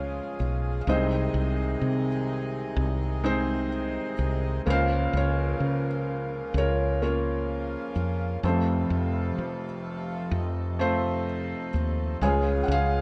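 A straight, unhurried 4/4 pulse at 64 BPM carries this tender, intimate acoustic folk-pop ballad fragment, where an up-front felt-muted upright piano sings the melody with a soft, mellow touch and audible action noise, a round, hollow-body fretless electric bass sits close and direct beneath it, and a reedy, breathing hand-pumped harmonium holds quieter sustained chords through a Db, Ab/C, Bbmadd9/Db, F and Db progression, all set in a dark production with a moderate recital-hall reverb.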